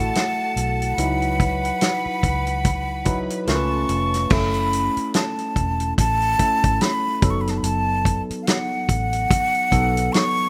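At a slow 72 BPM in 4/4, with a lazy swing on the sixteenths, this bittersweet, silky slice of lush 1970s-style soul drifts through F#m7, C#m11 and C#7b13 before settling onto A and then B7/F#. A metal jazz flute carries the melody up front, its breathy, straight, tongued tone marked by a chiff and an unsteady quality. Beneath it, an overdriven tine electric piano played through a combo amp adds a bright, barky, gritty accompaniment colored by phaser. A clear, bowed studio string section with vibrato and a smooth top adds a second line, then drops out at 4.3 seconds as the music moves into its second section. The drum kit, entering at 0.2 seconds, sits tight and mid-forward with a fat snare, a compact kick and a rolled-off top. A dark, foam-muted fingered bass supplies round, punchy low notes, all caught in light reverb and small room ambience with the rough feel of a home demo.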